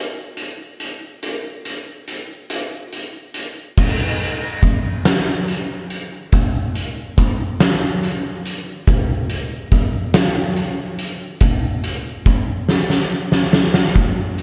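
A saturated, gritty sound in a bright stone room with light reverb carries this melancholic, cinematic rock excerpt in a straight 6/8 at 47 BPM, where an oversized, low-tuned acoustic drum kit, dark and up front with a fat snare, punchy kick, hi-hat and crash cymbal, plays alone from 0.4 to 14.4 seconds and ends its second section with a fill at 12.7 seconds.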